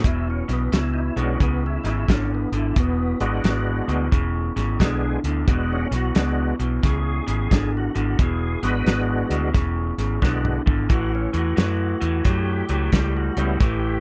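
A swung 4/4 shuffle drives this swaggering, gritty electric blues excerpt, anchored by a dry soul drum kit with a fat snare and tight kick up front, alongside a round, foam-muted electric bass, a slightly broken-up, lo-fi guitar riff through a small old amp, and a reedy tonewheel organ accompanying with key click, chorus vibrato and a slow rotary speaker over an E9 chord, until a drum fill at 10.2 seconds leads to A7 at 10.9 seconds.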